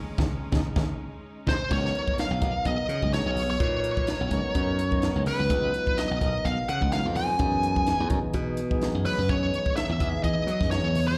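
Electric jazz fusion at 127 BPM in 4/4, funky and soaring, with a light sixteenth-note swing, cut from a longer piece and heard as a live gig through the venue's PA with club reverb. A bright, biting bowed string section holds sustained chords through the opening band accent on Eb7sus4, dropping out at 1.7 seconds just as the harmony moves to Db13sus4, while a drum fill rolls into that change. Underneath, a glassy, punchy slap bass sits up front beside a crisp, airy drum kit with a high-tuned snare, tight kick, hi-hat, crash and bright cymbals, and very quiet, thin-skinned congas add a bright touch. A clear tonewheel organ comps through a slow rotary speaker with plate reverb and slapback echo. From 1.5 seconds a smooth, overdriven picked lead guitar carries the melody high in its range, up front and wet with slapback echo and plate reverb, soaring over a shift to Gb13sus4 and a second drum fill near 8.8 seconds.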